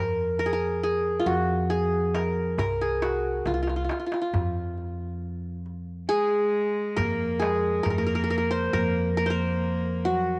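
A plectrum-plucked, bright-edged qanun leads up front over a woody, thumpy pizzicato upright bass in this soulful, hypnotic Arabic maqam ensemble piece in 10/8, with a crisp, deep, band-limited darbuka sitting in the background from 0.4 seconds and adding a fill at 3.5 seconds, and a reedy, gut-string cello entering with a bowed second line at 6.1 seconds, all captured as a cut from a longer work in a home cassette recording with light reverb and the ambience of a small room.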